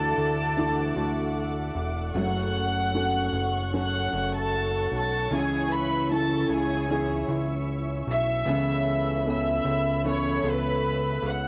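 Emotional and melancholic, this slow pop excerpt at 76 BPM in F# minor sets an up-front violin section with a reedy, gut-string tone and light vibrato carrying the melody over a felt-muted upright piano whose soft accompaniment lets its action noise through. A dark, woody string section holds lush sustained chords, while a fingerpicked steel-string acoustic guitar plays arpeggios through analog delay in the background. A fat, saturated analog bass with a detuned sawtooth bite sits up front, and the chords move from Dadd9 through F#m and C#m to Aadd9/C#, all within a small room and the soft haze of a home cassette recording.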